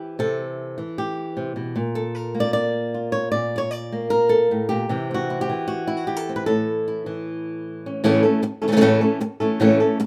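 A solo acoustic flamenco guitar with fresh, warm strings sits up front in a moderate, large studio reverb, in this fiery yet mournful flamenco excerpt at 153 BPM in a straight 4/4. The fingerpicked part spans A2 to D5, moving between C and Bb before reaching a new passage on A at 8.0 seconds, and the clip ends at 10.0 seconds, cut from a longer piece.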